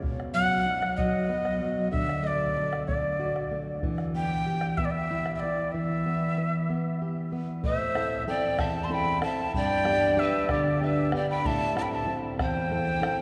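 Wistful and melancholic, this Andean folk fragment in E minor moves at 63 BPM in a straight 6/8, with a fingerpicked acoustic flamenco guitar and a deep, dark, close bombo beneath a breathy, up-front cane quena whose tongued vibrato melody enters at 0.3 seconds, joined at 7.7 seconds by a distant, expressive bamboo pan flute carrying a straight-toned second line with audible chiff, the whole ensemble sitting in the long, wet reverb of a church or concert hall.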